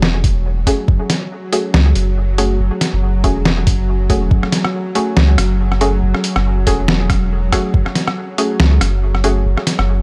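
Meditative and cavernous, this deep dubstep excerpt rides a swung, half-time groove under a dark production with digital ambience. A soft dub sub bass, deep and round with a triangle and square-wave tone, sits up front from the opening, sustaining low notes between E1 and C#2. A gritty, pitched-down trip hop sampler-style kit supplies hi-hat, rim click and a medium-tuned snare, compressed and tape-warm with studio reverb, while a layered electronic knocking kick joins at 0.2 seconds. A muted sawtooth chord stab with a filter pluck, chorus and dub echo decays over the F#madd9 harmony from 0.7 seconds. Behind it all, a bowed-like drone built from detuned sawtooth and sine layers with a noise edge holds a tense, bright, string-like F#3, fading in slowly with vibrato and its own reverb.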